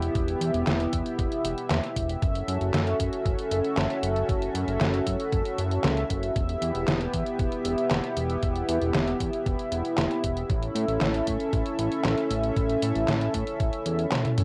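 A shimmering, chorused pulse-width pad sits up front in this nocturnal, moody synthwave excerpt, holding slow-attack sustained chords whose retro sheen is pumped by sidechain compression. Beneath it, a fat analog bass with a thick, saturated, wave-folded tone and a filter sweep carries the low end, also breathing with the same sidechain pumping. A detuned 8-bit digital drum machine, placed up front, supplies handclaps, hi-hat, a medium-tuned snare and toms, joined from 0.2 seconds by a thumpy electronic kick, both with a cassette-tape character and the sound of being re-recorded in a small room. The harmony moves from Em to F#m7, back to Em and then to A, in a straight, steady 4/4 groove. The excerpt ends on a brief drum fill at 14.1 seconds, and the whole recording has the intimate, slightly worn feel of a home cassette recording in a modest booth.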